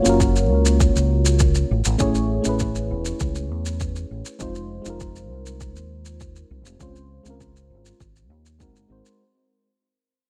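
A soft, full-bodied FM electric piano with chorus and delay sits up front in this smooth, blissful sunset chillout clip, carried by a round, punchy fingered electric bass, a gritty tape-warm shaker and a deep, overdriven electronic kick through seventh-chord changes in light reverb, all fading out across its 9.2 seconds.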